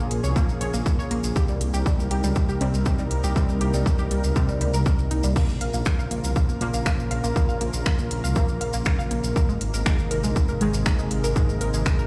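Melodic techno at 120 BPM in 4/4, this dark, melancholic passage cut from a longer piece sits in Bb dorian and moves through Bbm, Cm7 and Abadd9 chords. A thick, detuned sawtooth pad holds slow-swelling sustained chords with chorus and a vintage 12-bit sampler grit, while a punchy, wave-folded unison pluck spins arpeggios through a digital delay and a brassy, nasal synth stab sits in the background with chorus and delay. Underneath, a deep, rumbling detuned saw bass beats against itself, and every one of these synth parts breathes with sidechain pumping. A layered techno kit enters at 0.1 seconds with smooth hi-hats, finger snaps and crash cymbal, carrying studio reverb and pumping on the hats and cymbals. The overdriven electronic kick drum lands heavy and up front from 0.4 seconds, with grainy, mellow acoustic maracas in a small room alongside. The whole mix carries the stone reverb of a big sound system played in a bare room.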